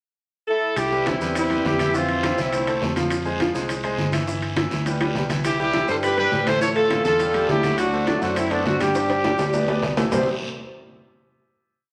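This is a short, festive salsa piece built for dancing, with a punchy, tight horn section opening on a pickup at 0.5 seconds and stating motif-based call phrases, partly doubled in thirds. At 0.8 seconds the band arrives: a round, fingered electric bass plays a tumbao that anticipates the chords, and a moment later a brilliant grand piano with audible action noise and long sustain drives a montuno in octaves. The percussion sits mostly in the background. The congas sound thin-skinned and saturated, with slaps and open strokes. The timbales ring close and dry with shell pattern and bell, the very quiet bongos keep steady eighths with a hand bell, a raspy guiro scrapes long and short strokes, and grainy maracas shake in a live room. After a drum fill, the horns return at 5.5 seconds, and a second fill leads into a final chord, all bathed in a large studio reverb.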